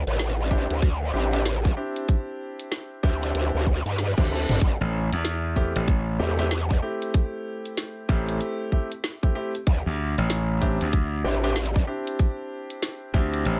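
Gritty and funky, this glitch hop excerpt moves at 95 BPM in 4/4 with a swung sixteenth-note feel. A growling, saturated growl bass with a wobbling formant-filtered tone and chorus sits up front from the start, until it drops out at 11.9 seconds, while a tight, up-front electronic kick and a layered kit with a woody snare, bright hats and toms drive the groove. A grand piano plays stabs with sidechain pumping, a low-pass filter and tape echo. Around 4 seconds a reverse cymbal sounds alongside a drum fill, and at 4.8 seconds a punchy, overdriven slap bass joins up front. The harmony moves from D9sus4 to Am7 and back to D9sus4, all in a dry sound with little reverb.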